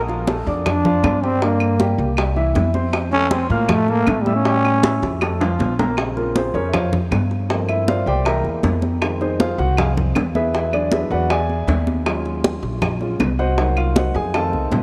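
A straight 4/4 groove at 158 BPM drives this sophisticated Afro-Cuban jazz excerpt, with ringing, high-tuned congas played with hard hands, tight, band-limited vintage bongos, woody claves in the background and a thumpy pizzicato upright bass up front. A raspy, growling trombone with scooped notes and vibrato takes the opening solo until 5.3 s, a drum fill at 4.8 s leads into the key of Bb minor at 6.0 s, and an intimate grand piano with audible action noise and long sustain then solos over rich extended chords. A moderate plate reverb gives the whole a polished sheen.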